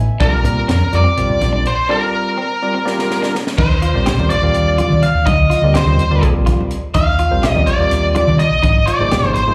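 A barky tine electric piano fill and a dark, round hollow-body fingered bass open this bright, slick electric jazz fusion excerpt in a straight 7/8 at 249 BPM, joined by background congas with hard hands, a crisp fusion kit with a high-tuned snare and tight kick, quiet compressed clean guitar stabs, and an up-front overdriven lead guitar melody, all heard live through a club PA with faint mains hum, moving from Bb major into Eb major at 3.6 seconds after a break and drum fill, with Ebmaj9 and Abmaj9 chords colouring the second half.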